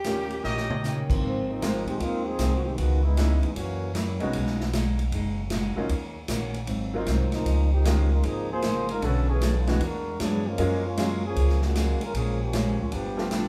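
Big band swing at a brisk 154 BPM, brassy and joyful in a live-room sound: a clear, close-miked saxophone section and a brief burst of trumpet-section stabs with a drum fill open the cut before a punchy, smooth-topped trombone section takes the solo from 1.2 s, over a woody pizzicato upright bass up front, a bright, brilliant upright piano, a picked steel-string acoustic guitar in the background and a natural big-room kit with a boomy kick, as rich chords like Ab69, Gb7b9 and Gbmaj9 pass by.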